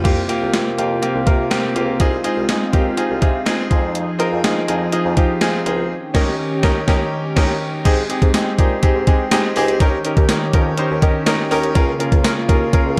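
1980s-style pop with a romantic, glossy mood, cut from a longer piece, where an up-front, brilliant grand piano plays accompaniment with a fill at 3.0 seconds over a shimmering, chorused pulse-width pad with tremolo, a thumpy, sampler-style drum machine with gated reverb on the snare, and a mellow, distant bassoon carrying the bass in the background, all set in a moderate scoring-stage reverb with a dark, warm production, with a band accent at 5.9 seconds before the second section arrives at 7.9 seconds.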